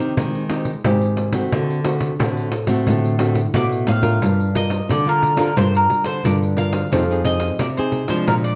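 Lively yet yearning, this short cut from a longer samba and choro piece moves at a straight 89 BPM in 4/4. Two fingerpicked nylon-string guitars sit up front from the start: one plays the accompaniment while the other carries the bass line, both with a classical, acoustic tone. A jingly pandeiro joins at 0.2 s, played with soft hands and heard in a live room. At 3.6 s a picked mandolin takes the melody, its double strings giving a round, up-front voice. The harmony moves from Abmaj7 to D7 before settling into G minor at 4.2 s, then passes through Gm7 and Fm7. Moderate studio reverb and a dark, warm production hold the small ensemble together.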